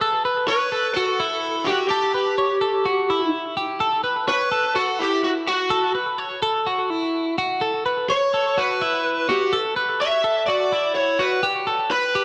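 A bright, clean twelve-string electric guitar opens this breezy, nostalgic indie pop excerpt, picking compressed arpeggios that sit up front and trail off into analog delay. At 0.5 seconds a lead guitar through a small cranked amp joins with a melody, its overdriven, warm tone also placed up front and carried by its own analog delay. Both guitars play over a straight 4/4 pulse as the harmony shifts from A7 to Esus2 at 3.8 seconds, then to G at 11.4 seconds. A moderate echo chamber reverb gives the echo-heavy mix a roomy, wistful glow. The passage ends at 12.2 seconds, cut from a longer piece.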